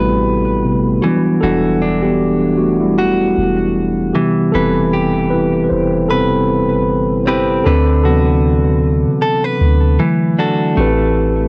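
A mellow tine electric piano takes the lead in this moody, sensual contemporary R&B excerpt, playing a solo from 0.0 to 10.8 seconds, clean and up front as if heard through its built-in speakers, with a coat of cassette tape. Alongside it, a direct-recorded clean electric guitar picks arpeggios throughout, its compressed, warm tone colored by warbly pitch drift, analog delay and the same tape treatment. A soft 808-style bass sits lower in the mix, deep, round and dark, with a fast attack that decays away and tube saturation. The groove moves at 77 BPM in 4/4 with a 16th-note swing in A dorian, cycling through extended chords from Am9 and Em9 to D13 and an E9sus4 before landing back on Am9. Light reverb and the intimate quality of a home cassette recording give the piece a hazy, lo-fi atmosphere.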